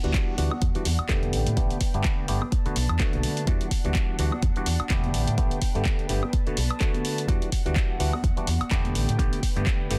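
A layered, up-front electronic kick drives this groovy, funky filtered disco house excerpt in E minor at 126 BPM with swung 16ths, alongside an overdriven, tube-saturated fingered electric bass, a stringy auto-wah clav with phaser through a combo amp, a biting studio violin section holding bowed chords with light vibrato and 12-bit sampler grit in the background, a tape-toned analog drum machine of handclaps, hi-hat and woodblock, and distant, bright tambourine and congas in a large room, with sidechain pumping on every part but the kick and a filter sweep running the full 10 seconds over chords cycling Em9, A9sus4 and Bm7 in a dense, heavily limited master.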